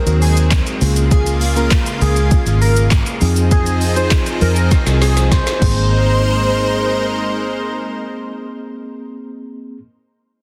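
An airy, dreamy lead with chorus and delay opens this upbeat, euphoric dance-pop fragment over a lush, detuned sawtooth pad, both pumping against the sidechain as the track begins in full drop. A dark, foam-muted fingered electric bass sits punchy and up front, joined by a mellow tine electric piano through its built-in speakers and a tape-warm, smooth R&B drum kit with a soft kick, woody snare, handclaps, shaker and smooth hats. A drum fill runs from 4.7 seconds before the kit drops out at 5.8 seconds, leaving the lead, bass, electric piano and pad to carry the chords Ab7, Db6, Fm7 and Abadd9 in a dense, heavily limited master with digital ambience.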